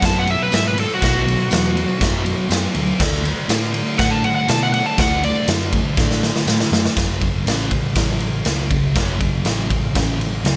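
Garage rock with a swaggering, menacing strut, this short cut opens on an overdriven slide guitar solo played with fingerpicks, riding over a thick, double-tracked fuzz guitar riff and a dark, round hollow-body bass with overdrive. The raw drum kit sits up front, saturated and gritty with a punchy kick, crash and ride, and a pumping stone-room sound, while a jingly tambourine hangs in the background from 0.5 to 6.6 seconds. The slide drops out at 5.5 seconds, and a drum fill at 6.0 seconds leads into a new section at 7.0 seconds, where the chords settle on F#m, all in light small-room reverb.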